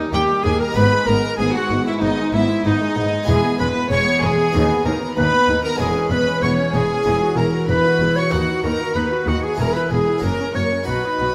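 A distant tenor recorder leads with a pure, woody straight tone and a soft, chiffy attack in this festive, lively excerpt from a baroque-style concerto movement in 4/4 with a straight feel. Beside it, one chamber violin section doubles its range as a second line, while another violin section carries a higher melody from 0.1 seconds, both heard close with light vibrato and a bowed, period-style gut-string sound. A dark, nasal viola section with a smooth top fills in accompaniment in the background, and a full Flemish-style harpsichord with two sets of strings adds plucked support behind it. Underneath, a rich double bass section and a more distant cello section carry the bass line with their reedy, gut-strung bowing. The harmony moves through G#m, E, B/D# and C#m7/E before settling on E and F# near the close, all set in a reverberant recital hall.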